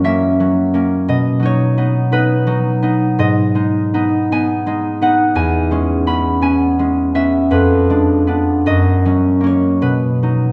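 A classical solo piece for concert harp in B major, this peaceful, serene passage moves in a slow, rubato 6/8 at about 50-58 dotted-quarter beats per minute. The fingerpicked harp sits up front, its ringing tone reaching from E2 to B5 as the harmony drifts from F# through G#m and a diminished chord before settling back on B. A wet recital hall reverb surrounds the instrument, and the 10.5-second excerpt is cut from a longer work.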